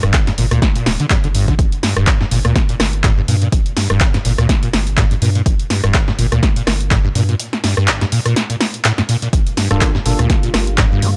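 A swung sixteenth-note groove of overdriven kick drum and punchy analog drum machine handclaps, hi-hat, rim clicks and snare, with a very quiet, compressed, pitched-up breakbeat kit underneath, drives this raw acid house excerpt over a single Gm7 chord. A squelchy, resonant sawtooth acid bass riff with overdrive, chorus and tape echo sits up front above a round, deep, sidechain-pumped analog bass. Near the end, a lush, detuned pad enters in the background at 9.5 seconds and a barky tine electric piano stabs briefly at 9.7 seconds, the whole captured in a dry, gritty hardware sound.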